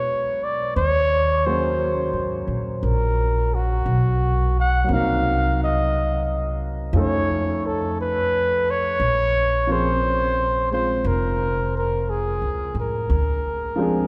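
Bathed in a long cathedral reverb that places it in a church or concert hall, this smoky, melancholic jazz ballad in Bb minor drifts at a slow, swung 58 BPM, with a soft-attacked, up-front flugelhorn carrying the solo melody over natural-toned grand piano accompaniment and a woody, thumpy pizzicato upright bass, all three sounding throughout this 14.1-second cut from a longer piece.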